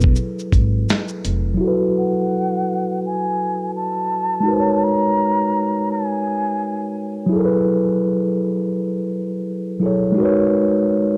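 Dark, lightly reverberant production frames this nostalgic, reflective lo-fi hip hop fragment at 84 BPM with a swung 16th-note feel in F# dorian, where a gritty, compressed sampler-style drum kit of thumpy kick, medium-tuned snare, handclaps, shaker and hi-hat joins a woody, growly pizzicato upright bass for an opening break that is over by 1.6 s, leaving a mellow, clean tine electric piano with cassette-tape colour to move between F#m11 and G#m11 under a filter sweep while a breathy silver concert flute with vibrato and a crisp attack sings an expressive line from 2.0 to 6.9 s.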